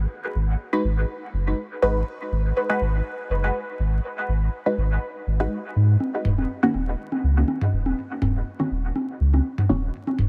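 Dub techno at 122 BPM in 4/4, with a light 54% swing on the sixteenths and a hazy, deep mood, this short passage is cut from a longer piece. A round, sine-like sub bass sits up front from the start, its fast attack giving way to sustained low notes between Eb1 and Ab2. At 0.7 seconds a muted, detuned chord stab built from sawtooth and pulse waves arrives, its filter pluck and short decay coloured by phaser and dub echo while a filter sweep runs across it. At 6.0 seconds overdriven electronic congas and toms join, their analog grit re-recorded in a small room and trailing their own dub echo. The harmony moves from Ab7 with its third omitted to Eb7, likewise lacking the third, at that same point, all under a light reverb and a bed of vinyl crackle.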